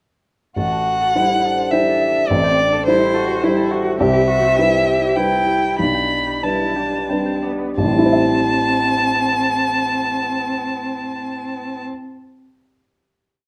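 A brief, melancholic neoclassical piece in three with a rubato feel opens at 0.6 seconds. A woody upright piano places bass and chords on the beats, a rich, focused solo violin sings the longing melody up front, and a distant bowed cello adds an expressive counter-melody with vibrato and portamento, answering at phrase ends and holding sustained chords. A ringing, fingerpicked concert harp pulses an ostinato in the background, and the theme slows from 3.1 seconds through Am7, Cmaj7 and Gadd9/B before settling on a final Am7 chord at 7.8 seconds, set in a light reverb.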